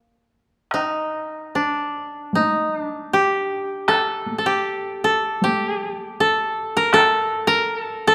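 In a free rubato pulse around 68-80 BPM in 4/4, this calm, austere excerpt of Japanese traditional chamber music opens at 0.7 seconds with an up-front, dry, woody koto plucked with fingerpicks carrying the melody between D4 and Bb4, while a softer taiko ensemble struck with heavy sticks and set in a small-room sound supports it until 7.1 seconds, and the koto continues to 8.1 seconds within a moderate concert-hall reverb.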